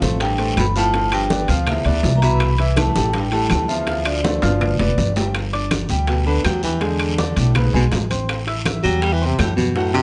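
Afro-Cuban jazz at 163 BPM in a straight 4/4, danceable and sophisticated, this excerpt is cut from a longer piece. A mellow vibraphone struck with soft mallets, motor off, carries the melody until 5.1 s. Beneath it, a breathy baritone saxophone with subtone and scooped notes plays a second line before taking a smooth, vibrato-laced solo from 5.3 s, when the music settles into G major. A clear, vintage-toned upright piano with long sustain supplies the accompaniment over jazz changes such as Dm7, G7 and C6, while a thumpy, woody pizzicato upright bass sits up front. The percussion stays mostly in the background: ringing congas played with soft hands, metal-shell timbales entering at 0.2 s, dry claves at 0.6 s, a raspy guiro and very quiet, high-tuned bongos, with a drum fill bridging into the solo. Light reverb gives the blend a gentle sense of space.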